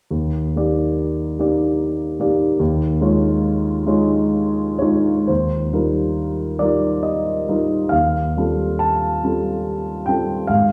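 Impressionist solo piano in a hazy, serene mood, played with free rubato in triple metre. A warm, polished grand piano sits up front and present, ranging from deep bass to the upper middle register as its harmonies drift from Ebmaj7 to Dbadd9/Eb, then to Ebadd9 and Fadd9/Eb after a new section opens at 5.3 seconds. A wet recital-hall reverb gives the passage an airy glow as it ends at 10.7 seconds, cut from a longer piece.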